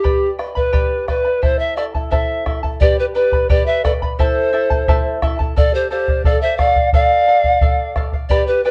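A pure, wooden pan flute carries the melody up front, its crisp, chiffy attack, vibrato and rolled-off highs giving this melancholic, earthy Andean folk excerpt a warm voice in a straight two-beat metre. Beneath it, a fingerpicked charango shimmers on its double strings, some octave-doubled, while a round, acoustic bombo sits up front with a live-room character. At 2.8 s a breathy, reedy bamboo pan flute with a soft attack joins on a second line as the harmony moves from G and Am toward Dm, all set in a dark, warm production with moderate studio reverb.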